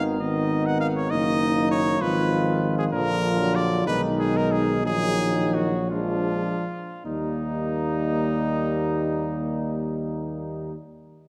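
Heroic yet grave, this classical brass quintet moves in a slow 6/8 at 50-67 BPM in dotted quarters, cut from a longer piece, easing to a slower pace between 2.0 and 7.1 seconds. A warm trumpet carries the melody over a mellow flugelhorn second line, with the vintage-toned French horn and a clear, distant trombone supplying accompaniment, and a roomy tuba anchoring the bass. The harmony moves from Abm through Bb7 before settling on Eb at 7.1 seconds, all bathed in a dark production and the long, wet reverb of a scoring stage.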